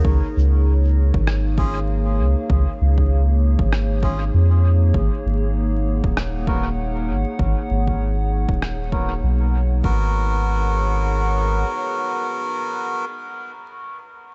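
Vinyl crackle hangs over a dusky, muffled mix in this meditative, deep ambient dub fragment, its gently swung groove moving from C# to G#m7. A warbling, detuned pad with a nostalgic lo-fi chorus holds slow-blooming chords over a round, soft sub bass sitting up front, while an overdriven, punchy kick stays in the background until 10.0 s and a pitched-down, tape-warm rim click ticks through dub echo. From 1.6 s a reedy, breathy melodica, close-miked and nasal, adds filtered stabs that trail off into echo, with a filter sweep running on it until 9.8 s.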